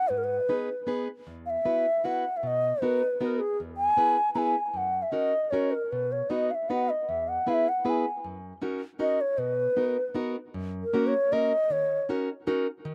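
A mellow bass bansuri with an airy, soft attack and expressive vibrato opens this whirling, nostalgic musette waltz in B major at 156 BPM, carrying the melody up front while a full-bodied, fingerpicked plugged-in steel-string acoustic guitar with fresh strings joins at 0.1 s to accompany it through chords such as G#m, Esus2 and Bmaj7, both parts touched with slapback echo in a dry outdoor setting before the second section arrives at 10.5 s in this passage cut from a longer piece.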